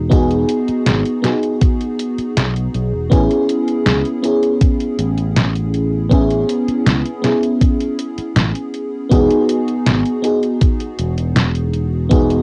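Vaporwave with a faded, nostalgic mood, this short cut from a longer piece drifts over Emaj7 and Amaj9 chords on a lush, dreamy FM electric piano layered with a soft pad, its decaying tones coated in chorus, 12-bit sampler grit, cassette tape and tape echo. Underneath, a fingered electric bass with transformer saturation holds the low end. A thumpy electronic kick and a detuned 8-bit drum machine supplying hi-hat and a medium-tuned snare enter at 0.1 s, both washed in studio reverb and cassette tape, and the home cassette recording sits in light reverb with its top end cut off above 10.4 kHz.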